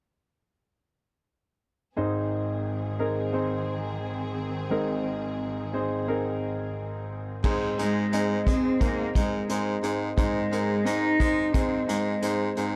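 Piano-driven pop in Ab major at 88 BPM, this warm, anthemic excerpt opens at 2.0 seconds with a clear, open concert grand piano, deep in the bass and up front, under sustained chords from an intimate studio string section bowed sul tasto with vibrato and a smooth top. At 7.4 seconds the strings drop out as a breathy, punchy baritone saxophone takes the bass line and a distant, roomy acoustic drum kit enters with bundle sticks, dark cymbals, hi-hat and a punchy kick, while a single bowed cello carries a smooth, even melody with vibrato from 7.8 seconds. A moderate large studio reverb and small room ambience give the production a dark tone.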